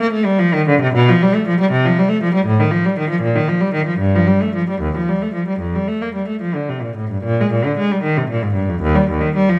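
Classical baroque-style suite movement for unaccompanied cello, heard as a short fragment cut from a longer piece. The mood is serene and dance-like, moving in 6/8 at roughly 68-80 BPM counted in dotted quarters, with a flexible, rubato feel in Bb major, tuned slightly low to A4 = 436 Hz. A single bowed cello carries everything from 0.0 to 9.6 seconds, sitting up front with a clear, smooth, even tone and vibrato, ranging from Eb2 up to Bb3. The opening material runs to 7.2 seconds before a contrasting passage takes over for the final stretch. A moderate recital hall reverb lends the solo line a sense of space and natural decay.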